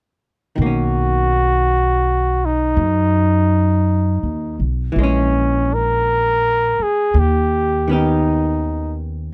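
From 0.6 seconds, a breathy, mellow trumpet with scooped notes carries the solo melody up front over dark, clean, picked hollow-body electric guitar and a woody, thumpy pizzicato upright bass on gut strings, forming a late-night, intimate jazz ballad at a slow, swung 55 BPM in B major that moves from Bmaj9 to A#m7b5 and D#7b13 in a dry, close 1970s-style studio sound, until the trumpet stops at 9.0 seconds in this excerpt from a longer piece.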